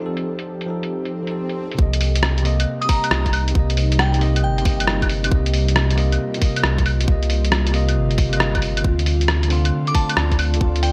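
An overdriven electronic kick drum sits up front from 1.8 s, tight and layered, anchoring this melancholic, wistful future garage excerpt with its heavy swing. Alongside it, a muffled, pitched-down sampler-style kit of claves, hi-hat and rim click adds compressed, lo-fi texture, with its hats, snare and percussion filtered and wrapped in gated reverb and small-room ambience. A bell-like tine electric piano carries the accompaniment from the start, clean and direct yet roughened by vintage 12-bit grit, pumping with sidechain compression and trailed by digital delay. Beneath it, a soft, breathy pad with a detuned, chorused shimmer holds mellow sustained chords in the background, moving from F7 to Cm7 and later Dm7. A faint electronic swell leads in, then a deep, round sub bass arrives with the kick, and a crystalline FM bell melody with chorus and delay appears at 2.8 s and returns near the close. 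The bright, 1980s-style digital production is finished with light reverb.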